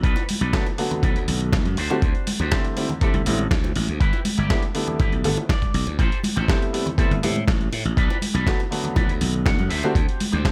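A growly, punchy slap bass sits up front in this cosmic, sleek nu-disco excerpt, driving a straight feel alongside a thumpy, compressed electronic kick. A gritty, sampler-style soul drum kit supplies hi-hat and a medium-tuned snare with a dusty, small-room character, while acoustic bongos and congas sit in the background. An electric guitar run through an envelope filter plays a twangy, picked riff, coloured by lush chorus, a low-pass filter and dub echo. From 0.5 s a brilliant concert grand piano adds accompaniment with deep bass and its own dub echo, moving through Bm7, D7sus4, G6 and Am7. Short clean electric guitar fills flash in at 5.2 s and again at 9.2 s, all within a dry, close sound.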